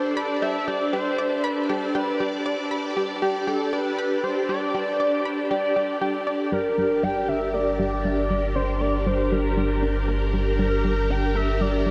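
Cosmic and hypnotic, this ambient passage at 118 BPM, cut from a longer piece, floats a shimmering, warbling pulse-width lead melody over a swirling phased string machine, a round analog pluck riff with a filter sweep from 6.5 s, and a bubbling stepped-filter texture in the background, before a deep sub bass enters at 6.5 s as the music settles into G minor, all soaked in a huge shimmer-laden reverb with a dreamy cassette-tape haze.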